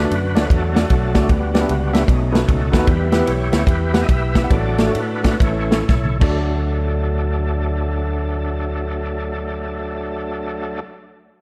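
A gritty, overdriven tonewheel organ leads this hopeful, uplifting stretch of uptempo gospel, taking the solo through its thick, percussive chords with audible key click, chorus vibrato and a slow rotary speaker. Beneath it, a bell-like, barky tine electric piano sits clean and in the background, while a round, dark fingered electric bass adds a punchy, amped low end. A natural acoustic drum kit with a punchy kick and medium-tuned snare sits up front, working across crash, ride and toms in a swung 4/4 that ranges between 114 and 152 BPM. The harmony moves from D through G/D, B7 and Em toward A and back to D, and the tempo slows from 2.9 seconds, with a drum fill closing out the kit's part just before 6.4 seconds. A moderate recital hall reverb frames the band as the organ, piano and bass carry on into the next section, cut from a longer piece.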